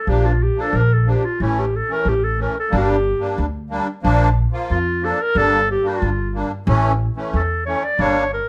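A smooth-topped, classical-style clarinet carries the solo melody up front in this bittersweet yet festive klezmer excerpt at 91 BPM in 2/4, backed by a reedy, shimmering musette accordion and a woody, thumpy pizzicato upright bass on steel strings, all in light reverb as the harmony moves among Bb, A and G minor across two phrases that turn at 4.0 seconds.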